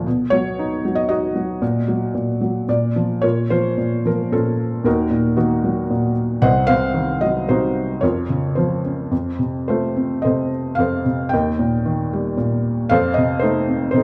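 A felt-muted upright piano, intimate and mellow with a short sustain and placed up front, carries this bittersweet, cool classical solo fragment in 3/4 at a rubato 106-119 BPM, moving from E-flat minor to B-flat harmonic minor at 3.2 s just after a brief fill from 2.4 s, all within a dark production and a moderate recital-hall reverb.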